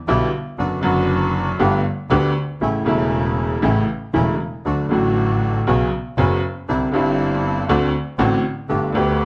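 A rubato pulse around 118 BPM in 4/4 gives this short tango fragment, cut from a longer piece, a tense and passionate pull, with the time stretching freely against the beat. A clear upright piano sits up front, its worn, woody, slightly detuned tone and long sustain carrying the accompaniment from 0.1 seconds across a low-to-middle range. A reedy, bright, airy bandoneon adds stabs, placed a little further back in the blend. A single bowed double bass anchors the low end with a warm, nasal, boxy voice, and its vibrato and portamento make each note expressive. The harmony moves in D major from Em7 through Bm/F#, Gadd9 and A, then on to D, Bsus2, Cadd9 and D7 before landing on Gadd9, and the tuning sits slightly low at A4 = 436 Hz. A light reverb gives the trio a modest sense of room.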